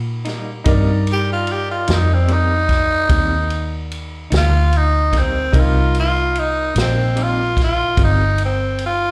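Heard live through a club's PA with only a touch of room reverb, this smoky, soulful slow blues in C minor moves at 49 BPM in a straight 12/8, cut from a longer piece and resting on a Cm7 chord. A raspy, growling tenor saxophone takes the solo up front from 1.1 seconds, with slapback echo. A round, foam-muted electric bass sits forward beneath it, while a vintage drum kit with dark cymbals and a punchy kick plays kick, snare and ride. In the background, a woody upright piano with audible action noise and a slightly broken-up, lo-fi electric guitar with tremolo add accompaniment, both carrying slapback echo.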